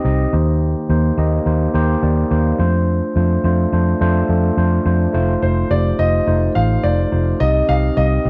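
In a straight 4/4 at 106 BPM, this short cut from a longer 1980s-style pop piece sits in F mixolydian and carries a nostalgic, uplifting mood. A mellow tine electric piano with a clean, direct tone plays the accompaniment throughout, passing through Eb6, Dm7/F, F7 and Cm. Beneath it, a vintage muted fingered electric bass holds the low end from start to finish, its dark, round, foam-muted sound amped and placed up front. At 5.4 seconds a smooth grand piano enters with a melody in its upper register, lending a vintage glow to the final seconds. Both keyboard parts carry a cassette tape colour, and the whole recording has the intimate feel of a home cassette recording, set in a small room with light reverb.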